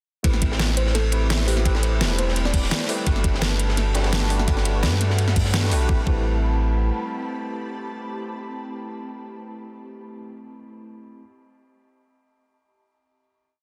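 Rolling and dreamy, this short liquid drum and bass piece at 170 BPM in A dorian moves from Am9 to Gmaj9 and back, with a drop running to 5.9 seconds before a final chord rings out. A round, deep sub bass plays long gliding notes beneath an overdriven, knocking electronic kick in a two-step pattern, layered with an up-front pop kit's deep snare and hats and a gritty, dark-cymbaled looped breakbeat with edits, while a barky tine electric piano holds drop2 chords with syncopated pushes through chorus and delay. An ethereal, detuned pad swells in at 1.3 seconds with phaser, reverb and sidechain pumping, and a sparkling, bell-like FM electric piano adds short answering phrases with tape echo in the background, all under a dense, heavily limited master with light reverb.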